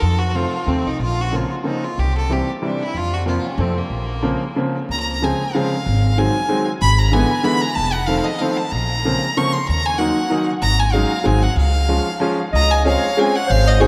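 Bittersweet and nostalgic, this brief musette waltz in 3/4 at 187 BPM with a swung lilt moves from Bb harmonic minor into Db major at 4.9 seconds, as a clear, intense bowed violin with vibrato and analog delay carries the melody over pizzicato upright bass on steel strings and a bright, woody upright piano with short sustain, before a mellow, roomy clarinet adds a second line at 12.5 seconds, all set in a vast, echoing cathedral reverb.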